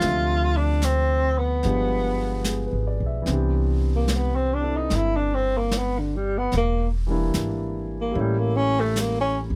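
A mellow tenor saxophone with subtone, vibrato and scooped notes carries the melody of this tender, late-night jazz ballad at 74 BPM in a swung 4/4 and takes a solo from 3.3 seconds, over a warm, deep-voiced grand piano, a woody pizzicato upright bass and an airy kit of brushed snare and hi-hat, all captured in a close, dry, detailed sound as the harmony moves from Dm7 and G7b9 to Cmaj9, Em7b5 and A7b9.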